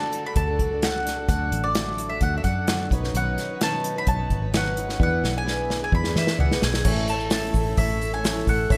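A straight 4/4 pulse at 129 BPM drives this jangly, hopeful folk rock and heartland rock passage in E major, cut from a longer piece. The up-front acoustic drum kit, played with bundle sticks, has a punchy kick, a medium-tuned snare, hi-hat, toms and crash in an airy, polished small-room sound, and it plays a fill from 5.0 to 6.9 seconds. A round, foam-muted fingered electric bass enters at 0.4 seconds. A woody, double-strung mandolin carries the melody up front over a shimmering, octave-doubled twelve-string acoustic guitar, whose boxy parlour tone comes with audible finger squeak. Underneath, a reedy, breathing pedal harmonium holds chords in the background, a dark, mellow vintage upright piano sits very quietly, and a grainy, bright tube shaker joins at 6.8 seconds. The chords move from D to Badd9 and E7 before landing on A, all set in a moderate recital-hall reverb.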